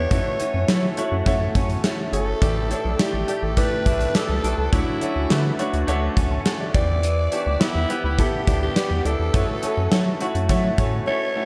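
A gated 80s drum kit sets a straight 4/4 pulse at 104 BPM, its tight kick, medium-tuned snare and hi-hat sounding big, airy and up front in a gated room. This short fragment of uplifting, romantic 1980s-style pop is anchored by a rubbery square bass, hollow, bouncy and dark, with a resonant filter pluck and a moving notch, which holds the low end until 11.0 seconds. A clear, polished baby grand piano with subtle chorus carries the accompaniment through F#m7, A7sus4, Dmaj7 and Em7 before returning to F#m7. Set in the background, a direct-recorded clean electric guitar plays a compressed, picked riff treated with ensemble chorus and delay. Over the top, a raspy alto saxophone takes the melody with vibrato and a gritty pop edge, trailed by its own delay. Moderate plate reverb soaks the whole mix in a dreamy haze.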